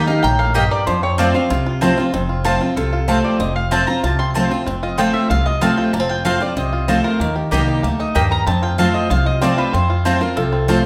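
A bright, full-bodied picked steel-string acoustic guitar sits up front in this driving, lively bluegrass excerpt at 189 BPM in F mixolydian, picking out accompaniment over a thumpy, dark pizzicato upright bass on gut strings as the harmony moves between Eb and F. A warm, woody mandolin carries the melody with a solo over the opening 2.1 seconds, alongside a twangy, percussive fingerpicked banjo, while a second mandolin with a brighter, double-strung tone adds stabs from 0.5 seconds. The band sounds like it is playing live in one room, wrapped in a wet, large studio reverb.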